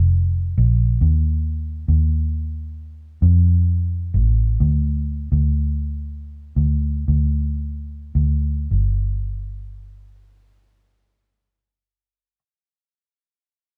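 This pop piece, cut from a longer work, carries a longing, emotional mood in a straight 4/4 feel. A vintage muted electric bass, played with the fingers, plays from 0.0 to 12.4 seconds, moving between F1 and F2. Its foam-muted tone is dark, round and punchy, with an amped character that sits up front in the mix. The tempo slows from 1.0 to 8.7 seconds, where a new section begins and carries on to the close. A moderate studio reverb gives the sound the feel of a band playing live together in one room.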